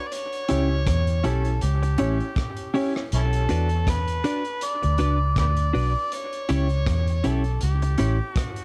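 A loping, lightly swung 4/4 groove from a crunchy breakbeat kit, with its tight kick, hi-hat and rim clicks, carries this spacious, deep dub reggae fragment cut from a longer piece, while a round, foam-muted fingered bass sits up front and anchors the dark harmony moving between diminished and minor chords. An overdriven, gritty harmonica takes the solo melody from the very start, with light vibrato, scooped notes and tongue slaps trailing off into dub echo, as a clean, compressed electric guitar with analog chorus and echo accompanies it. A woody, slightly detuned upright piano adds echoing stabs in the background only until 3.0 seconds, all within a dry, dusky production carrying a faint mains hum.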